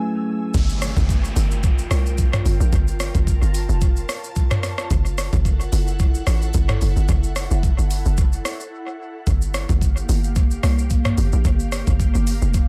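A late-night, hypnotic amapiano groove at 110 BPM in G dorian, with a gentle 16th-note swing, cut from a longer piece. It opens on a brief bell-like, bright tine electric piano chord with dub echo that sounds only until 0.6 seconds, while an ethereal, airy pad holds sustained chords throughout, its detuned unison tone softened by ensemble chorus, phaser, built-in reverb and sidechain pumping. At 0.5 seconds the drop arrives as the hollow log drum bass and a smooth R&B drum kit enter up front, the bass bouncy and percussive with a fast attack and a decaying tail, and the kit built from a knocking kick, hats, rim click, shaker and toms with a small-room feel. An electronic downlifter sweeps beneath the opening of the drop until 4.9 seconds, as the harmony moves between Gm7 and F#m7, with a short break around 8.7 seconds before returning to Gm7. The whole mix sits in an echo-heavy digital ambience.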